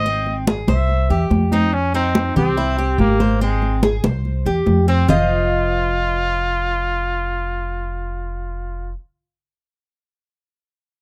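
Trumpet, tres and upright bass start together on a short excerpt of Cuban son in the guajira vein, a warm, nostalgic piece in straight 4/4 that was cut from a longer performance. The solo trumpet carries the melody up front in a pop style, punchy and tinged with vibrato, yet it has a roomy, distant quality. Under it, the Cuban tres picks arpeggios on its double strings, some doubled at the octave, giving a warm, metallic shimmer. The pizzicato upright bass is woody and dark, with a thumpy gut-string tone that sits forward in the mix. High-tuned congas played with soft hands ring out from a small room before they stop at 5.2 seconds. The dry, close sound recalls a 1970s studio session, and the harmony moves through Ab, C, F5 and C7 before returning to Ab, C and F5.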